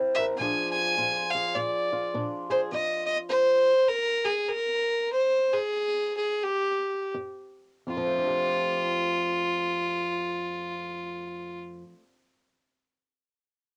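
A biting, nasal fiddle carries the melody up front, its earthy bowed tone colored by cassette tape, in this gritty, laid-back fragment of acoustic country blues swinging in 4/4 at around 81-103 BPM. A dark, woody fingerpicked guitar with old strings and a boxy body sits equally close, playing swing-style accompaniment over Bb7 before the harmony drops away and the pace slows between 2.7 and 7.9 seconds, then settles on F69. The home cassette recording places both players in a booth with moderate ambience.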